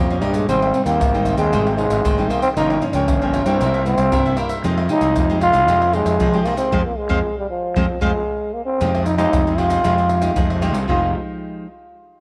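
Lively and nostalgic, this short cut from a longer samba and choro piece in straight 4/4 puts a raspy, growling trombone up front on the melody, its soft attack and vintage jazz voice riding over a crisp, picked cavaquinho and a fingerpicked nylon-string guitar with audible finger squeak sitting in the background. A bright, fuzz-drenched fingered electric bass anchors the low end, while maracas, pandeiro, tamborim and a tight surdo, struck with hard hands, sound distant as if in a large room. A band accent arrives at 6.7 seconds with a drum fill landing inside it at 8.3 seconds, and the guitar continues until 11.7 seconds, all set in light reverb and small room ambience.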